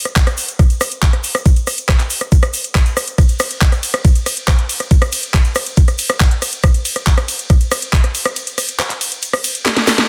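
A knocking electronic kick drum sits up front and drives this short, intense trance passage at 139 BPM in a straight 4/4, pounding from 0.2 seconds until it drops out at 8.4 seconds. Around it, a layered garage drum kit adds handclaps, rim clicks, ride cymbal, metallic hi-hats and a cracking snare with a touch of soft clipping, all carrying a tape-like warmth. Further back, a grainy, bright egg shaker sounds distant, as if caught in a large room. The whole cut plays as a drop, and once the kick falls away the kit and shaker carry on alone until a drum fill closes things at 9.7 seconds. The mix is dry and dense, with a heavily limited modern master that keeps the energy relentless.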